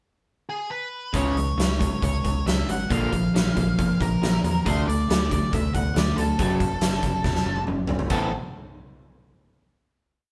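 Dark and brooding, this short, complete alternative rock piece in the quiet-loud style opens with an octave-fuzz lead guitar stating a motif-based melody alone over a brief pickup bar. At 1.1 seconds the full band crashes in for a driving pre-chorus, moving through C#m, Bb, D5 and F#m in a straight 4/4 feel. A dark, hollow-bodied overdriven semi-hollow guitar carries the palm-muted eighth-note riff, while a bright, twangy electric guitar through a small old amp picks palm-muted arpeggios in the background, slightly broken-up. An overdriven picked bass adds growly, punchy eighth notes underneath, and a huge arena drum kit sits up front with a fat snare, punchy kick, hi-hat, crash and toms in a big rock groove, capped by a fill at 7.2 seconds. The band plays live in a moderate stone room, and the piece closes on an A5 chord at 8.1 seconds.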